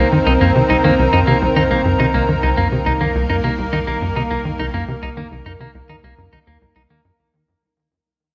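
Ambient, sequencer-driven space music at 104 BPM in a straight 4/4, this short cut from a longer piece carries a cosmic, mysterious mood over a single Cm7b5 chord. A lush, thick unison pad built from detuned sawtooth and square waves holds sustained chords up front, its bright tone spread with chorus and slow to bloom and release. Beneath it, a tight sequencer bass drives a punchy riff with a fast-attack filter pluck that decays, touched with subtle chorus and analog delay. A clean, picked electric guitar adds compressed, twangy arpeggios through analog delay. Far in the background, a mellow analog drone on C2 evolves through pulse-width modulation and a moving notch, entering at 0.1 s. The whole passage sits in a wet concert hall reverb and begins fading out at 1.0 s, trailing away by 7.2 s.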